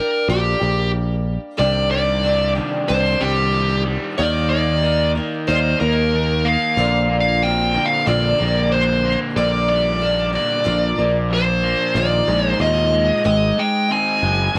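A dark, smooth overdriven lead guitar carries the melody from the first moment, soaked in plate reverb and tape echo, over a woody, swing-style acoustic guitar with old strings, while a growly, up-front picked electric bass arrives at 0.3 seconds. At 1.6 seconds a crunchy, double-tracked overdriven guitar joins with a riff, and the chords move through Gm/Bb, Cmadd9, Eb and Bbadd9 before a closing turn to Bb7sus4 and Abmaj7. This dusty, wistful rock fragment moves at a straight 92 BPM in 4/4, captured as a home cassette recording with a modest booth ambience.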